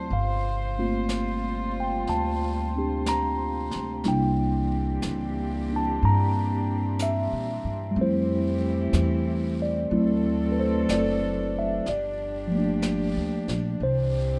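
Jazz ballad in a slow, swung 4/4, romantic and intimate, cut from a longer piece, with a mellow tine electric piano up front carrying the accompaniment through chords such as Gm11, C9 and Fmaj9. A woody, thumpy pizzicato upright bass and a dark, reedy bowed cello section holding sustained chords with light vibrato sit beneath it, while a brushed jazz kit of snare and hi-hat enters at 0.1 seconds, set back in a small natural room. Light reverb gives the whole a soft, close air.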